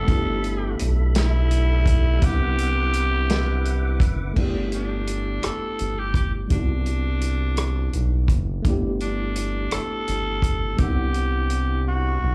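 This is a slow R&B piece in 6/8 at 56 BPM in G major, cut from a longer performance and carrying an intimate, sensual mood. A raspy, gritty tenor saxophone sings the lead melody in a vintage pop style, touched by slapback echo. Beneath it a worn, slightly out-of-tune tine electric piano plays lightly overdriven accompaniment through its built-in speakers, while a deep, round analog bass sits up front with a mellow, sustained tone and a ring-modulated edge. A dry, mid-forward soul drum kit with a tight kick, rim clicks, hi-hat and crash holds the groove from 0.1 seconds, and a clean tonewheel organ with key click and slow rotary speaker hovers in the background with sustained chords until 4.3 seconds. The harmony alternates between G6/9 and Cmaj9#11, and the whole performance sounds like a small club gig heard through the venue's PA, wrapped in club reverb and small room ambience.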